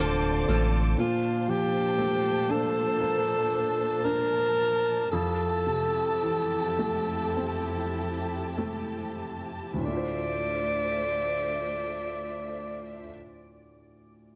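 This excerpt of a heartbroken pop ballad in D minor opens on a Dm7 chord, with a woody upright piano carrying audible action noise, a dark, lush bowed string section holding sustained chords, picked steel-string acoustic guitar arpeggios with a touch of finger squeak, and a deep, full sub bass with octave sitting up front. The guitar and bass fall away at 1.0 seconds, when a close-miked alto saxophone takes the melody in a soft-attack jazz style, its vibrato tinted by tape echo. Moving at a slow 46-60 BPM in 4/4, the tempo slows further as the harmony passes from Bbmaj7 to Fmaj7 before returning to Dm7. The saxophone and expressive symphonic strings end at 13.1 seconds, leaving the intimate piano to close at 14.4 seconds. A moderate echo chamber reverb and small room ambience surround the emotional performance.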